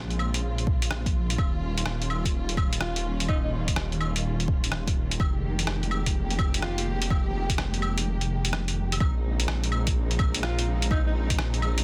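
Nocturnal and ghostly, this future garage excerpt moves at 126 BPM in Bb dorian with a 16th-note swing, as a dark, lush symphonic string section holds bowed chords with vibrato beneath a menacing, detuned sawtooth bass that swells through its filter with tube saturation, both pumping against the sidechain. Up front, a muffled, pitched-down sampler-style kit of claves, hi-hat and rim click carries soft clipping on the snare, while a deep electronic kick re-recorded in a large room drops out from 8.1 to 9.0 seconds. A breathy alto saxophone with light vibrato and analog delay slips in for brief phrases from 2.8 seconds onward, all set in light digital ambience under a dense, heavily limited master.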